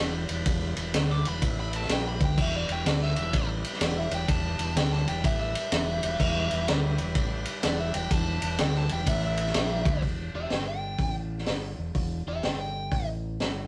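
A swung 126 BPM groove in 4/4 drives this smoky, heavy E minor blues rock and southern rock power-trio fragment, where an up-front vintage kit with a punchy kick, high-tuned snare and dark cymbals sits under a growling, overdriven fingered bass, a bright, biting overdriven lead guitar takes a solo from 1.1 seconds, and a background tonewheel organ with key click and slow rotary speaker holds full sustained chords until 10.0 seconds, all captured as a rough rehearsal-room recording with moderate reverb.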